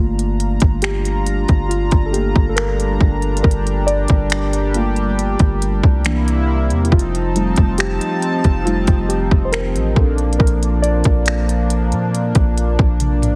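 A straight, unhurried 4/4 trap kit drives this late-night contemporary R&B fragment, entering at 0.2 s with a hard-clipped kick, crisp hats, finger snaps and toms, and closing on a drum fill at 13.0 s. A deep, boomy 808-style bass sits up front beside the kit, while muted, felt-like synth keys carry the solo throughout with a dark, intimate tone, a filter sweep and chorus, over a shimmering, retro pulse-width pad that holds chords moving from Gm7 through C7 and F7 to Bbmaj7. Light reverb and digital ambience surround a heavily compressed, radio-like sound that leaves the mood full of longing.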